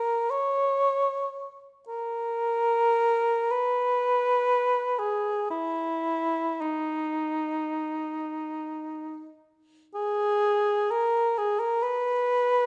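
Lonely and meditative, this short classical passage cut from a longer piece features a single dark cor anglais playing expressively in free time between D#4 and C#5, its light vibrato heard close and up front against a moderate recital hall reverb, with a new section beginning at 10.0 seconds.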